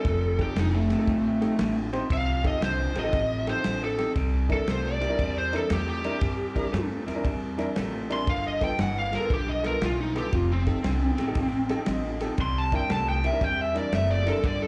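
Gritty and soulful, this electric blues shuffle swings along as a dark, overdriven lead guitar with slapback echo solos up front throughout, backed by a slightly broken-up, lo-fi rhythm guitar riff, a growly pizzicato upright bass, a dry soul drum kit with dark cymbals and a tight kick, and a boxy upright piano that adds a brief fill at 11.6 seconds, all heard as a live gig through the club's PA in a clip cut from a longer piece.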